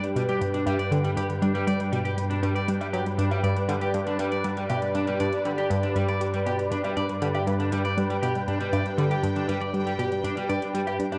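A straight 4/4 pulse carries this cosmic, luminous fragment of sequencer-driven ambient space music, where a round, detuned analog pluck riff with chorus and delay sits alongside a swirling, up-front phased pad holding sustained chords on G, a twangy, slightly broken-up electric guitar picks arpeggios through delay and shimmer reverb, faint electronic hi-hat and woodblock with metallic hats echo as if from a large room, and a dark, breathy, wind-like tuned noise texture hovers in the background, all wrapped in a plate reverb and the warbling pitch drift of worn cassette tape.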